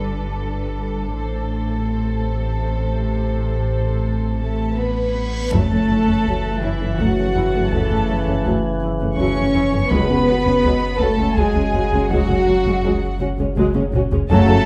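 Dark, warm production in a wet stone room gives this ominous, mysterious suspense cue a shadowy weight from the first moment. At 82 BPM in a straight 3/4 in F# minor, it opens on bowed sul tasto strings: a floating, pure violin melody rides over a rich, lightly vibrato second violin line, woody viola accompaniment, and cello and double bass sections sitting in the background, all above a round sine sub bass drone. A mellow, vintage French horn section slips in with sustained chords at 4.4 seconds, and an electronic reverse cymbal rises into an impact at 5.5 seconds, where the harmony turns from Gadd9 and Am to F#m7. From that point the trombones add smooth sustained chords, compressed, saturated taiko drums struck with hard sticks play in the background, and very quiet timpani mark the phrases, while a high, soft violin texture hovers above. The passage settles on C#sus4/F#, a drum fill at 13.8 seconds pushing it toward the cut.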